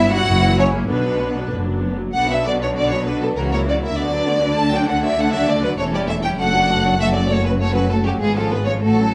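A quick classical-period movement for string orchestra opens with all five sections sounding together from the first moment, a graceful and lively passage in B minor set in 2/4 at 99 BPM with a straight feel. The first violins carry the melody up front, their bowed tone focused and full with vibrato yet slightly distant, while the second violins trace a clear, intense second line beneath them. Violas supply the accompaniment with a smooth top to their sound, and the bass is shared between a close, expressive double bass section and a cello section that sits in the background, its playing marked by portamento. The harmony moves from F#7 to Bm early on, later passing through D, A7/E and F#m before landing on C#7/G# near the close, as a brief opening section gives way to a longer second one at 2.1 seconds. A light reverb surrounds the ensemble in this short passage cut from a longer piece, which runs about 9.1 seconds.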